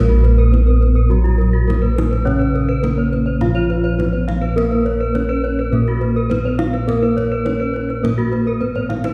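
Shimmering and brilliant, this short excerpt of Balinese gamelan moves at a straight 104 BPM in 4/4 in Bb pelog. A mellow, padded-mallet bronze metallophone carries the melody over a lower metallophone accompaniment, while two more metallophones play arpeggios with wooden and horn mallets, the horn-mallet one bright and airy, both in a paired tuning that sets up beating shimmer. Dark, round bossed gongs sit up front in the bass, a tight, vintage-sounding kendang adds percussion with a fill from 8.6 seconds, and the whole ensemble rings in a reverberant church-like hall.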